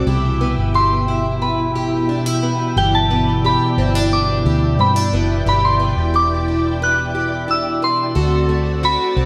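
A floating, dreamy stretch of dream pop in G major opens with all four parts sounding together at a relaxed 89 BPM in straight 4/4, cut from a longer piece and lasting about 9.3 seconds. A soft FM synth bell carries the melody high in its register, its pure, gentle tone warbling through chorus, phaser and delay as each fast-struck note decays. Beneath it, an up-front ensemble organ-string holds sustained chords with a vintage, organ-like character, its soft attack and evolving triangle and pulse-wave colour thickened by ensemble chorus. A picked, plugged-in twelve-string acoustic guitar plays arpeggios with a shimmering, octave-doubled parlour sound, touched by finger squeak, subtle chorus and delay, while a vintage foam-muted electric bass sits up front with a dark, round, punchy amped tone. The harmony moves from Cmaj7 to G6 at 2.8 seconds and reaches D7 at 8.2 seconds, all bathed in a moderate plate reverb that lends the whole a soft, suspended glow.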